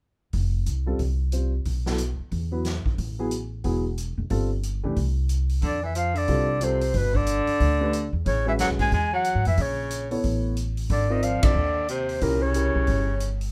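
Swinging and sophisticated, this fast small-group swing and bop excerpt at 182 BPM opens with woody, up-front pizzicato upright bass and a distant, roomy drum kit with punchy kick, intimate grand piano comping with audible action noise from 0.9 seconds, then a whispered, breathy clarinet melody with scooped notes and a clear baritone saxophone second line both enter at 5.6 seconds, with a band accent at 11.4 seconds and little reverb overall.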